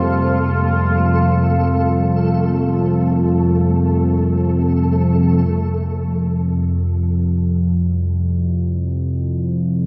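An analog drone sits up front, holding the low register from F2 to C3 for the full 9.9 seconds with a mellow, vintage sawtooth and pulse-wave tone whose pulse-width modulation and chorus give it a slowly warbling, evolving character. Above it, a sweeping resonant pad sustains chords between F3 and F4, its detuned sawtooth voice marked by a filter swell, slow attack and long release. A faint, flickering granular texture of detuned triangle tones drifts between A3 and A4 with its own built-in reverb, dropping out at 5.5 seconds. This dark ambient drone piece unfolds in free time in F major, resting on a single Fsus2 chord. The mood is ominous and desolate, with a wet cathedral reverb placing the sound in a vast, echoing space, and it is cut from a longer piece.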